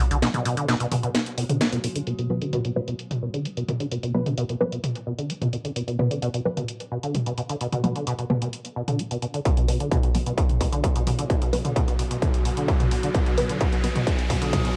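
Driving peak-time techno at 130 BPM in B minor, dark and intense, cut from a longer piece: a squelchy, resonant sawtooth acid bass riff with lush chorus and analog delay runs throughout under filter sweeps, joined by an up-front drum kit with cracking snare and low-passed hats and toms, a muted, nasal dub chord stab with phaser entering at 2.3 seconds, an eerie metallic FM drone in the background, and a distorted electronic kick arriving at 9.5 seconds as a riser drives the build-up, with most parts pumping and colored by cassette tape in a small room.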